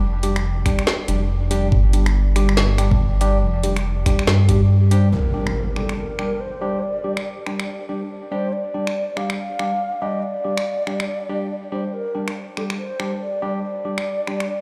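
A heavy, cavernous deep dubstep excerpt in G minor at 141 BPM with a half-time, swung feel, its sound echoing as if played on a big sound system in a bare room with large studio reverb. A dark, detuned sawtooth bass rumbles up front with tube saturation until 5.1 s, joined by an overdriven knocking kick that drops out at 4.7 s, while an overdriven garage kit of finger snaps, metallic hats and a woody snare runs throughout beneath bright, barky electric piano stabs treated with phaser and dub echo. At 5.1 s an electronic impact marks the shift to a second section, where a breathy, mellow low ney carries an expressive melody with vibrato, treated with dub echo.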